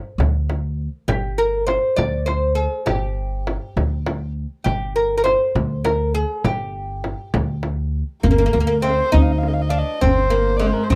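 A bright, woody oud leads this soulful, hypnotic Persian modal ensemble fragment, its fretless double strings plectrum-plucked up front from 1.1 seconds. The piece moves in a slow 6/8 at 67 dotted-quarter beats per minute in G dastgah shur. Pizzicato upright bass on steel strings anchors the low end from the start, joined by a small frame drum played with soft hands, also up front, until 7.8 seconds. At 8.2 seconds the second section brings in a dark kamancheh, a single intimate bowed voice with an airy bow, soft attack, light vibrato and portamento. A deep tombak also enters there, sounding distant in a large room. The sound is dry and close, like a 1970s studio recording.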